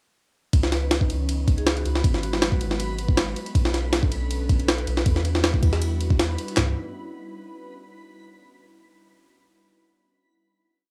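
A heavily chopped, pitched-up jungle breakbeat and a round dub sub bass arrive together at 0.5 seconds, launching a raw, frenetic drum and bass piece at 159 BPM in C# phrygian with a light 16th-note swing. The compressed, gritty sampler-style kit sits up front, with a thumpy kick, a high-tuned snare, handclaps, ride cymbal and toms that sound re-recorded in a large room, while the deep sub bass holds long, dark, mellow notes underneath. An airy, breathy pad with chorus and vintage 12-bit sampler grit sustains slow-attack chords through a C#m9, G#m7, Bm9 and Em9 progression, and a metallic, ringing vibraphone played with medium hard mallets adds short answering phrases in the background, colored by boxy small-room tone, cassette tape and dub echo. From 1.8 seconds, a reversed, granular texture swells in with a bright, dreamy held high note bathed in its own reverb. The drop gives way at 6.6 seconds to a final C#m9 chord, and the whole piece carries the lo-fi character of a home cassette recording with light reverb.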